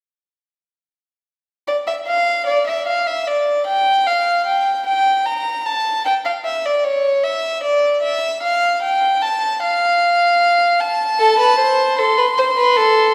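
A nasal, airy-bowed period-style violin carries the solemn, driving melody of this baroque-style fugue in 12/8 from 1.7 s, with a second reedy gut-string violin joining up front on a lower line at 11.2 s, the whole performance heard from further back in a resonant recital hall.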